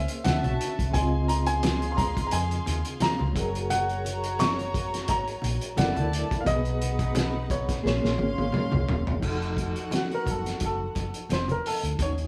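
An intimate baby grand piano with audible action noise carries the melody through this cinematic, bittersweet excerpt of lush 1970s-style soul at 87 BPM with a light sixteenth-note swing, over a gut-toned bowed string section as the second line, a reedy electric piano with fast tremolo, a round, punchy hollow-body bass, a muffled, gritty cloth-damped drum kit with a fat snare and a fill from 7.8 seconds, and very quiet low-tuned congas, all sharing one live room with wet studio reverb, and the piano takes a solo at 9.2 seconds while the band plays on beneath it.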